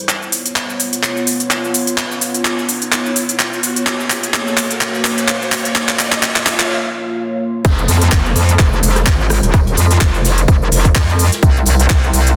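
Gritty and bouncy, this bass house cut runs at 127 BPM in F phrygian with a 16th-note swing, taken from a longer piece. A dark, moody analog pad of detuned sawtooth and square waves with a sub octave holds sustained chords from the start, treated with chorus, phaser and sidechain pumping, while a crisp, tape-warm garage kit of handclaps, hi-hat, cabasa and rim click sits up front, its snare softly clipped. Through the build-up a drum fill plays and a riser climbs over chords moving from Db7 to Gb, with a background riser and downlifter effect, before a short break at 6.7 seconds. The drop lands at 7.6 seconds on Fm, bringing in an aggressive, metallic FM wobble bass that is bright, saturated and pumping, a tight, layered electronic kick, and a very quiet acoustic jazz kit with snare, hi-hat and tambourine in a small room. A lush hall reverb around 1.8 seconds and a dense, heavily limited master give the track a polished, modern weight, with a C chord arriving at 11.4 seconds.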